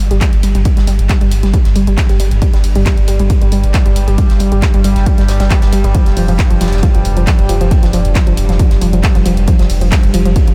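A round sine sub bass with tube saturation and sidechain pumping opens this driving, hypnotic peak-time techno excerpt. It is joined by a techno kit of handclaps and hi-hat re-recorded in a large room, and by a heavy, layered electronic kick that sits up front. A loose acoustic kit of hi-hat, ride and fat snare sits distant and roomy in the background. Above them, a warbling, lo-fi, detuned sawtooth pluck with chorus and a diffuse ambient delay rides over a slow-attack vintage analog drone that enters at 0.4 seconds. The harmony settles onto Fsus2 at 5.9 seconds, and the overall mix carries little reverb.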